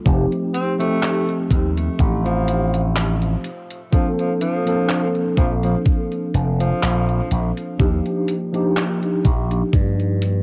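A mellow tine electric piano opens this woozy, faded vaporwave excerpt, its chords tinted by ensemble chorus and cassette tape as they move from F7 to Bbmaj7 to Ebmaj7 in Bb major. Almost at once, a bright, punchy slap bass with an envelope filter and tube saturation arrives up front. It is joined by a thumpy electronic kick and a detuned 8-bit drum machine of handclaps and hi-hat, both overdriven, sampler-style and re-recorded in a small room. The groove sits at a slow 62 BPM in 4/4 with a light swing on the sixteenths. At 0.5 seconds, a growling alto saxophone takes the solo melody, breathy and raspy with vibrato and tape echo, until it stops at 7.3 seconds. The kick drops out at 9.9 seconds, and light reverb sits over the whole home recording on cassette.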